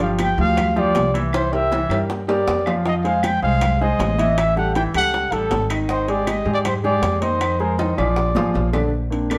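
A dark, breathy trumpet leads this lively, danceable Afro-Cuban jazz excerpt, its whispered, close-miked tone carrying vibrato and a soft attack up front, while a present grand piano and a woody pizzicato upright bass with steel strings sit just as close. Behind them, ringing metal-shell timbales, very quiet round bongos and high-tuned congas, and woody claves in the background drive the groove, with drum fills at 1.3 and 7.8 seconds. The band plays live in one room, bathed in a wet studio reverb as the chords move from G5 through Fm7 to a closing Bb7.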